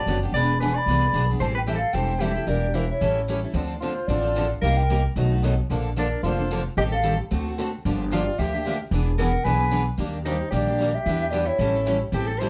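A swung 4/4 at a brisk 224 BPM drives this bittersweet, virtuosic passage of acoustic string swing in the jazz manouche style, cut from a longer piece and moving from A minor into D minor at 3.5 seconds through a chain of seventh chords. A pure, hollow concert flute with vibrato carries the melody, while a punchy yet distant soprano saxophone plays a second line, over a woody, thumpy gut-string upright bass played pizzicato up front. Two picked steel-string guitars accompany, one a bright, full-bodied jumbo and the other a boxy parlour sitting in the background, all heard from further back in a moderate studio room.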